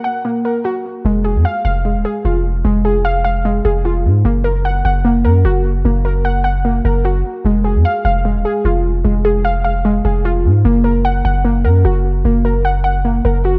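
Dark, lightly reverberant production frames this melancholic, hard-hitting trap excerpt at 150 BPM in a half-time feel, where a warbly, dusty, detuned pluck with chorus and digital delay plays arpeggios alone until a deep, mellow, sine-toned 808-style bass with long, decaying notes enters at 1.0 s beneath chords moving between Gb and Fm in F phrygian.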